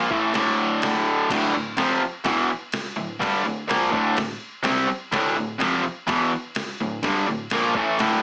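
A straight 4/4 garage rock groove drives this menacing, gritty fragment cut from a longer piece, with a cranked stack guitar sitting up front from the first moment, its bright, double-tracked riff picked through overdrive and moving from a D5 power chord to D minor at 1.3 seconds. Beneath it, a trip hop sampler-style drum kit, pitched down, compressed and thumpy, supplies kick, medium-tuned snare and crash, its gritty samples re-recorded in a small room. A moderate small-room reverb and a small-speaker character give the whole passage a boxy, raw feel.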